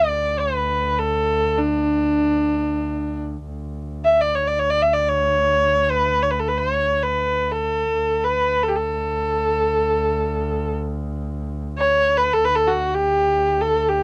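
A bowed kamancheh leads this passionate, stately Persian modal piece in free time, its smooth, even melody moving between D4 and E5 with vibrato and portamento, placed up front in the mix. Beneath it, a single bowed double bass holds a focused drone on D2 with its own vibrato, both parts sounding through the grain of cassette tape for the full 14.0 seconds. Tuned to A4 = 444 Hz, this fragment of a longer work carries the rich character of a home cassette recording with a light reverb.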